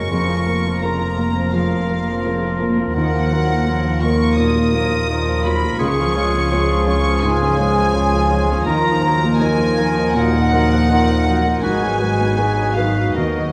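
A clear, pure violin section carries the melody in a floating sul tasto line between Eb5 and Eb6 in this sorrowful, bittersweet orchestral film cue in Eb minor, cut from a longer piece. The tempo sits around 83 BPM in 4/4, but the beat stretches and yields in a rubato feel. Beneath it, a darker violin section with light vibrato and a smooth top plays a second line in the same range, while an oboe with light vibrato and a soft-edged clarinet add quiet second lines. A rich viola section and an intimate baby grand piano, its action noise faintly audible, fill in the accompaniment, with a French horn section holding vintage-toned sustained chords and a mellow concert harp ringing out fingerpicked arpeggios. Dusky cello and double bass sections anchor the low end with soft-attack bowing, and the harmony moves from Bbm/F through Ebmadd9 and Db to settle on Abm7 at 11.6 seconds. Scoring-stage reverb gives the whole ensemble a wet, dark, warm sound throughout the 13.5 seconds.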